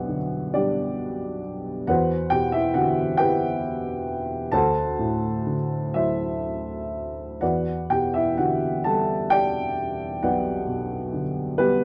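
A dark, woody upright piano, slightly detuned and up front with long sustain under light reverb, plays a calm, lyrical classical passage alone in a rubato 6/8 feel, moving through rich ninth chords before settling back on Em9 at 7.4 seconds in this short cut from a longer piece.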